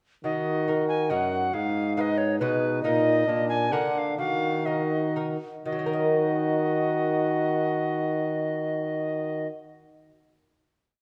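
A dark production set in a wet recital hall gives this renaissance-style consort dance a solemn, courtly air. An airy, wooden tenor recorder sits up front with the tune, its straight, tongued notes carrying a distinct chiff. Beneath it a mellow bassoon, soft in attack with light vibrato and heard from a distance, sustains chords in the rhythm of the tune, while a clear, present trombone holds the bass with passing notes. A bright, fingerpicked lute on nylon double strings, some doubled at the octave, marks bass and chords on the beats in triple metre. The dance slows from 2.2 to 5.7 seconds and settles onto a final chord, where the lute rings on alone until 10.3 seconds after the other parts fall away.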